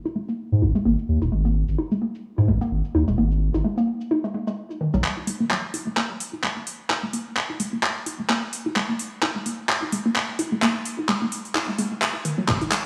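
Cool and clinical, this minimal techno excerpt at 129 BPM swings its 16ths as a hollow, detuned square-wave pluck riff with chorus, sidechain pumping and digital delay runs alongside a tape-warm garage kit of metallic, low-passed hats, cabasa and handclaps, while a thick, saturated sub bass pumps from 0.5 to 5.0 s, a filter sweep runs through both sections, a drum-fill build-up drives the second half, and a punchy analog kick drum lands only at 12.5 s within a lush hall reverb.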